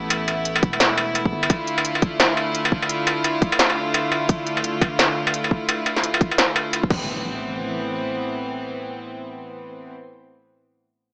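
A bright, close chamber string section holds sustained chords with a sidechain pump over a deep, mellow 808-style bass that sounds only until 1.5 seconds, opening a tense, cinematic half-time drum and bass excerpt where an industrial kit of clanging snare, smooth tape-warm hats, crash and struck metal is soon joined by an overdriven, tight electronic kick, both playing until 7.0 seconds, before a distant electronic impact arrives at 6.9 seconds and the strings ring on through a moderate echo-chamber reverb with a small-speaker sound.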